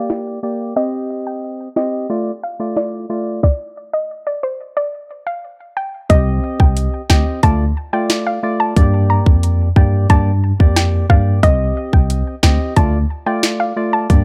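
A tight, up-front electronic drum kit with a sharp snare and metallic hats sets a straight, bouncy dancehall groove in this sultry passage cut from a longer piece. A soft, round pluck carries the melody through chorus and delay over hollow, percussive organ stabs with chorus, both sitting further back, while a filter sweep runs through the opening 6.1 seconds. At 6.1 seconds a clean, mellow tine electric piano enters as the bass, and the dry production stays dusky under a low-pass filter.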